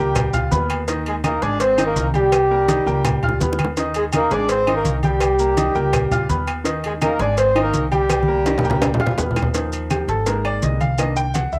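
A brisk 166 BPM salsa groove in 4/4 and Eb major drives this festive, danceable fragment, with low-tuned congas, tight high bongos and cowbell, ringing agogo bells and timbales, woody claves and grainy maracas filling out the percussion, while a thumpy, gut-strung upright bass plays underneath and drum fills arrive at 2.7 and 8.1 seconds. A punchy, up-front horn section with light vibrato and octave doubling carries the melody through plate reverb and a cassette tint until 9.3 seconds, over the accompaniment of a clear, present grand piano. That piano then takes a solo from 9.5 seconds over Ebsus2, Absus2 and Cm7, all in a damp little booth with a homespun cassette character.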